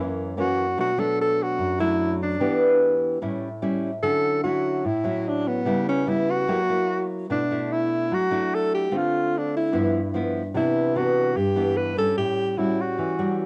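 A breathy alto saxophone and a fingerpicked nylon-string guitar begin together in this romantic, relaxed bossa nova excerpt, set at 147 BPM in a straight 4/4 in D major and tuned slightly low to A4 = 438 Hz. The close-miked saxophone sits up front with a soft subtone and gentle vibrato, playing a jazz-style solo melody. Beside it, the classical-style guitar is also up front, its acoustic tone warm, with small finger squeaks audible as it carries the accompaniment through rich jazz harmony such as Dmaj9, F#7b9 and Cmaj9. A moderate studio reverb adds a little space, and the piece was recorded at home on cassette. Around 4.0 seconds the piece moves into a new section that runs to the end, with the saxophone dropping out at 13.4 seconds just before the guitar.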